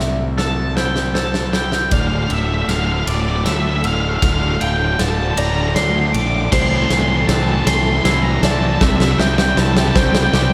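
A big rock drum kit opens this brooding, cathartic post-rock excerpt with a fill, its fat snare and punchy kick sitting up front beside a fuzzy, overdriven fingered bass. Behind them, a felt-muted upright piano and a twangy, clean electric guitar play arpeggios, each touched with slapback echo. Moving at a slow 52 BPM in 6/8 and in D minor, an octave-fuzz lead guitar takes the melody from 0.4 seconds, dark and distorted with its own slapback echo. At 1.9 seconds a bright, thick fuzz guitar riff joins in the background as the harmony shifts from Am/C to Dm, and a build-up begins while the drums keep filling. A sludgy, overdriven guitar adds a very quiet riff at 6.5 seconds as the chords return to Am/C before settling on C. A lush hall reverb gives the mix a big arena sound.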